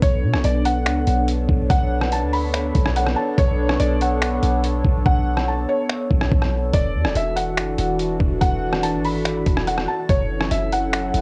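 Lightly reverberant and carrying the grain of a home cassette recording, this short cut from a longer piece is a spacious, ethereal slice of atmospheric cloud-rap at 143 BPM in 4/4, felt at half-time and tuned to A4 = 439 Hz. A felt-muted upright piano carries the melody high in its register, soft and intimate with audible action noise, dulled by a low-pass filter and trailed by analog delay. Beneath it, an up-front, nostalgic tape-like pad sustains slow-attack chords from detuned sawtooth and triangle tones, warbling through chorus, phaser, built-in reverb and sidechain pumping. A deep, boomy 808-style sine bass with a noise layer hits with a fast attack and decays darkly, while a gritty, pitched-down sampler-style kit pairs a thumpy, overdriven kick with finger snaps, rim clicks and hi-hats. The hi-hats drop out from 5.1 to 6.7 seconds, returning as the harmony moves from Bm9 to E9sus4, and the progression settles on F#m7 at 10.1 seconds.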